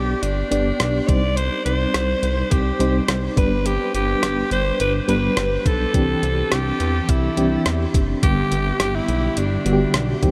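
A breathy, raspy alto saxophone sings the melody up front with vibrato, scooped notes and tape echo over a full-bodied FM electric piano with tremolo and a glossy, chorused synth bass, joined at 0.2 seconds by a clean 12-bit drum machine with a thumpy kick, hi-hat and rim click, in a nostalgic, uplifting 1980s-style pop fragment moving between G, C minor and Cadd9, its dreamy mix soaked in huge ambient reverb.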